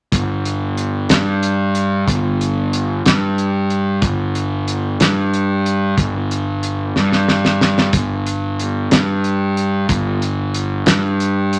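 Psychedelic rock in a slow 6/8 at 61 BPM, dark and hypnotic, built from just a fuzz-drenched picked electric bass and a damped 70s drum kit playing together throughout this excerpt. The bass sits up front with an overdriven, warm fuzz tone between G1 and G2, while the dry, mid-forward kit brings a fat snare, tight kick and hi-hat. A drum fill arrives at 7.0 seconds, and a moderate studio reverb gives the pair a close room sound.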